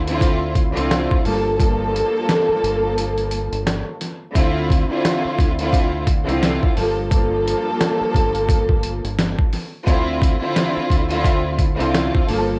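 A boom-bap hip-hop groove at 87 BPM in 4/4 swings its 16ths, with a sampler-style drum kit of thumpy kick, medium-tuned snare and hi-hat that sounds compressed, pitched down and muffled, carrying a tape-worn grit and the feel of a small room. The mood is dark and gritty, set in D minor and moving between Dm9 and Gm9 chords, with a break between 3.0 and 4.4 seconds. A deep fingered electric bass sits low and round in the mix, dark in tone, moving between G1 and D2. Above it a bowed studio string section plays close and intimate with vibrato, a soft attack and a smooth top, its sul tasto sound filtered at both ends and dulled by cassette. The strings and drums stand up front in a dry home recording on cassette, cut from a longer piece that runs about 12.6 seconds.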